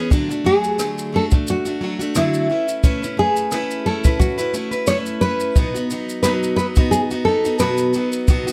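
Acoustic pop with a sunny, carefree mood, moving at 88 BPM in 4/4 with a light sixteenth-note swing, built on a short run of chords from D through Aadd9 to B. A full-bodied, picked dreadnought-style steel-string guitar carries the accompaniment up front with audible finger squeak, while a brushed jazz kit in a small, natural-sounding room adds a boomy kick, rim clicks and shaker from 0.1 seconds. At 0.5 seconds a fingerpicked nylon-string guitar with a deep classical tone enters with the melody, all set in light reverb in this brief fragment of a longer piece.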